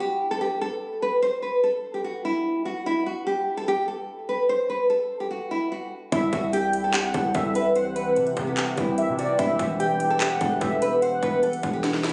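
A fingerpicked nylon-string guitar opens this hard-hitting, menacing trap excerpt alone, its classical tone up front. At 6.1 seconds a half-time groove at 147 BPM arrives with electronic drums (hard-clipped kick, sharp snare, metallic hats, handclaps), a heavy distorted 808-style bass and a smooth, velvety synth lead with chorus and tape echo, while a deep, moody pad with chorus and reverb fills in beneath from 7.0 seconds. The chords move from C to Em, and a drum fill lands at 11.8 seconds, all through a light, phone-captured room sound with a dull top end.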